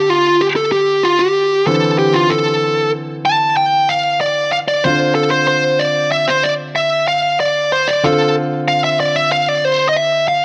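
Set in a straight 5/8 at 188 BPM counted in eighths, this tense, brooding progressive instrumental rests in D minor on a Dm7 chord, tuned to A4 = 441 Hz. A bluesy, overdriven lead guitar takes an up-front, picked solo between F4 and A5 across the full 10.4 seconds, its distorted tone carried by plate reverb. Beneath it, a concert grand piano accompanies from D3 to F4, intimate and polished with deep bass, long sustain and audible action noise, while a wet studio reverb frames this fragment cut from a longer piece.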